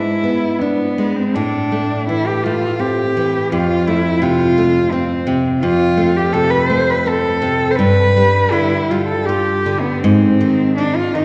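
A bowed cello with vibrato and a focused, smooth-topped tone sings the melody alongside a fingerpicked nylon-string classical guitar with fresh strings, a full-bodied sound and a finger squeak, both up front from the first moment in this serene, warm romantic duo cut from a longer piece, moving in a rubato 3/4 at around 82 BPM through E7/G#, Am, F and G7 before turning to Ab at 10.0 seconds, all set in a wet concert hall whose 1.9-second reverb is heard from further back in the room.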